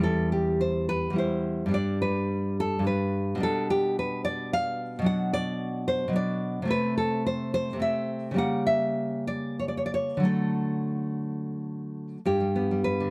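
A rubato feel in 3/4, drifting between 86 and 112 BPM, opens this sunny, nostalgic romantic piece for solo classical guitar, cut from a longer work and settling into G major from 5.1 seconds. The fingerpicked nylon-string guitar sounds full-bodied and up front, ranging from E2 to F#5 through a progression that passes Bm, Am/C and C#dim7 before reaching D and resolving to G at 12.2 seconds. Close, detailed microphones with little reverb catch every finger squeak along the strings.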